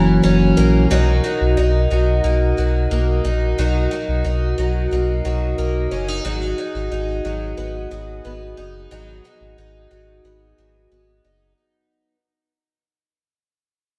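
A dark, warm production steeped in a wet recital-hall reverb frames this haunting, ethereal dream pop fragment, cut from a longer piece. A soft, flute-like tonewheel organ holds sustained chords through a slow rotary speaker, its faint key click audible beneath the haze. A bright, boxy twelve-string acoustic guitar picks octave-doubled arpeggios, shimmering through lush chorus and digital delay, with a touch of finger squeak and a parlour-guitar character, and it rings on until 12.1 seconds. Underneath, a deep, full sub bass with an added octave sits up front with a fast attack and sustained notes. The harmony moves from F#7 to Bmaj7 and settles on G#m7 at 6.2 seconds, while the whole passage fades out gradually from 0.9 seconds onward.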